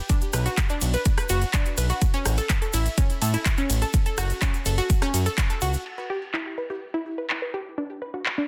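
A straight 4/4 groove at 125 BPM drives this expansive, dreamy progressive house passage in E dorian, where a punchy, tape-tinged electronic kick sits up front through the drop beside a thick, saturated, detuned analog bass with sidechain pumping and a grainy, very quiet tube shaker, while a layered house kit of crisp low-pass-filtered hi-hats, handclaps, rim clicks, ride and crash cymbals and a round, nasal analog pluck arpeggio dressed in chorus, phaser, digital delay and pumping carry on after the kick drops out at 5.5 s and the bass and shaker stop at 5.8 s, the pluck then taking a filter sweep from 5.9 s, set in light digital ambience under a dense, heavily limited modern master.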